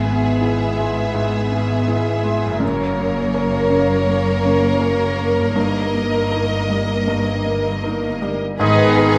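A felt-muted upright piano with a soft, intimate tone and audible action noise underpins this sorrowful, moving cinematic film-score excerpt at a rubato 81 BPM, while lush bowed violins with vibrato sing the melody over a second violin line, a rich viola section, a dark, woody cello section, a double bass section and a very quiet, ringing harp in arpeggios, before an oboe and a mellow French horn section slip in at 8.6 s, all set in the moderate reverb of a scoring stage.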